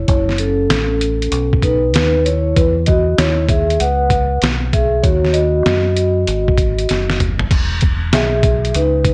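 Nocturnal and mellow, this jazz-hop clip from a longer hip hop piece moves at 97 BPM with a lazy swing, and a worn, warbling cassette-tape quality drifts the pitch across the whole recording. An up-front vibraphone, played with soft mallets and a slow motor vibrato, rings out metallic and mellow over chords such as F#m7, E69 and D#m7 before settling on Emaj7 at 7.5 seconds. A dark, round fingered electric bass anchors the low end while a gritty, pitched-down sampler-style drum kit thumps from 0.1 seconds, with a compressed, tape-warm punch and a drum fill at 6.9 seconds, all in a dry room.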